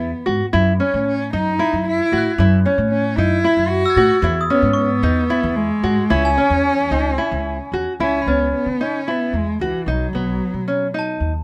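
Restless and urgent, this fragment of contemporary chamber music moves in an uneven 7/8 metre with a straight feel. A single bowed cello carries the melody up front and close, its expressive line colored by vibrato and portamento, while a fingerpicked nylon-string guitar spins small arpeggios beside it. Underneath, a pizzicato upright bass strung with steel gives a woody foundation. At 2.2 seconds a glockenspiel struck with brass mallets joins a little further back, adding bright, bell-like sparkle that rings above the strings. The harmony moves from E through F#m7, Emaj7 and C#m, then the music shifts into a new section at 8.0 seconds that reaches a B9 chord, all set in a light reverb.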